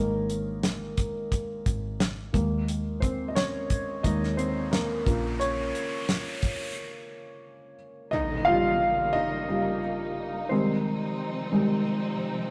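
Piano-driven pop with an uplifting, anthemic mood, led by a dark, woody upright piano with audible action noise that plays throughout, joined by round, foam-muted picked electric bass and a dry, damped 70s drum kit with a fat snare, both of which drop out before a break at 6.8 seconds, an electronic riser and impact carrying it into bowed studio strings with expressive vibrato and portamento from 8.1 seconds, all in a rough rehearsal-room recording with moderate stone room reverb.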